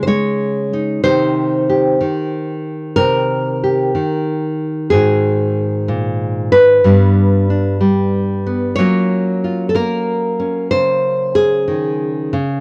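A solo nylon-string guitar, fingerpicked and full-bodied, opens this cool, moody jazz passage at a slow 62 BPM, its swung eighths moving through chords from Dbsus2 and Cm7 to Absus2, G and a closing Gbmaj9#11. The guitar sits up front with a deep classical tone, and finger squeak can be heard on the strings. The sound is dry and close, in the manner of a 1970s studio recording, and the 12.6-second passage is cut from a longer piece.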